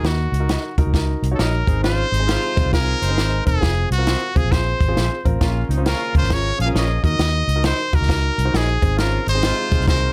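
A brilliant, forceful trumpet leads this uptempo 1960s-style soul excerpt, sitting up front with vibrato and scooped notes as it carries a driving, passionate melody at 134 BPM with a swung 4/4 feel. Beneath it, a dark, foam-muted fingered electric bass sounds round and amped, standing forward in the mix alongside a compact cocktail drum kit whose hi-hat, high-tuned snare and punchy kick sound dry and natural. A clear grand piano adds intimate accompaniment, its action noise faintly audible. From 0.5 seconds, an electric guitar through a small old amp contributes bright, slightly broken-up, twangy stabs with a subtle chorus, tucked into the background. A roomy, loosely played horn section joins at 1.8 seconds with a distant second line, while the chords move through Ebm, Ab, Fm and Bbm under a light reverb.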